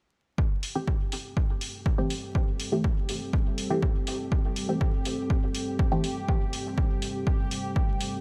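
Dub techno at 122 BPM in A minor, this nocturnal, hypnotic fragment of a longer piece settles on a single Am7 chord over a straight 4/4 pulse. A punchy analog kick drum sits up front from 0.4 seconds, with an electronic hi-hat joining just after, both carrying the air of a large room. A muted, detuned sawtooth chord stab enters at 0.8 seconds, its fast attack and decaying filter pluck treated with phaser, dub echo and sidechain pumping while a filter sweep runs across it. From 1.3 seconds a deep, moody pad of unison sawtooth and sine with a sub octave holds sustained chords, softened by chorus and built-in reverb and breathing with the sidechain. A bright, resonant bubbling texture steps randomly through its filter on G4 from 2.2 seconds, set beneath everything else in level, while a layer of vinyl crackle adds digital ambience.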